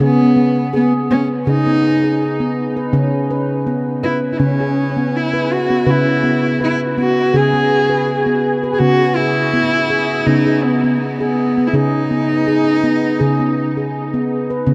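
Meditative world music in C# minor at a gentle 82 BPM with a light swing: a single bowed cello, woody and close with vibrato and sul tasto softness, sings a dark melody through diffuse ambient delay until 13.9 seconds, while a ringing nitrided-steel handpan plays up-front arpeggios with sharp finger strokes, all set in a vast, echoing space with a huge reverb tail in this short cut from a longer piece.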